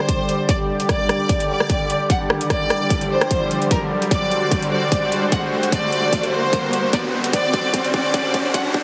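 A swung, half-time 4/4 pulse at 149 BPM drives this chaotic, aggressive heavy wobble dubstep build-up, where an overdriven, punchy electronic kick and a layered big-room dance kit with metallic hi-hats and rim clicks push into a drum fill at 4.1 seconds, a detuned sawtooth supersaw pad pumps with sidechain under a smooth, vibrato-rich violin section melody roughened by 12-bit sampler grit and digital delay, and a background riser enters at 0.8 seconds, the mix sitting in a moderate hall reverb with a heavily compressed, high-passed, radio-like sound.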